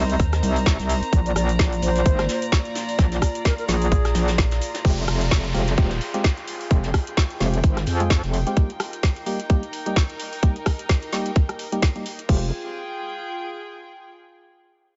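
Gritty and swaggering, this bass house fragment opens on a drop where an aggressive, distorted wobble bass and a dark digital FM bass pump against a moody detuned analog pad and distant gut-toned chamber strings, driven by a tight-kicked garage kit with woody snare and metallic hats plus a very quiet brushed kit, while a breathy silver flute drifts through dub echo from 1.3 seconds before a hollow organ stab arrives at 4.8 seconds under a filter sweep alongside a downlifter, set in a small room with a muted top.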